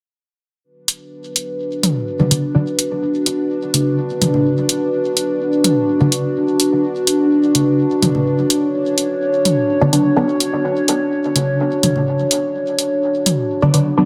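Dub techno with a nocturnal, hazy mood, built on a straight 4/4 groove of overdriven electronic hi-hat up front and layered electronic toms and congas trailing dub echo, all sitting in a moderate digital room. A dark, moody analog pad of detuned square and sawtooth with a sub octave holds sustained chords through chorus and phaser, while a bubbling, resonant stepped-filter texture stays in the background. Muted, deep chord stabs with a fast filter pluck, tape grit and dub echo land at 2.2, 6.0, 9.8 and 13.6 seconds, a filter sweep running across them through this excerpt cut from a longer piece.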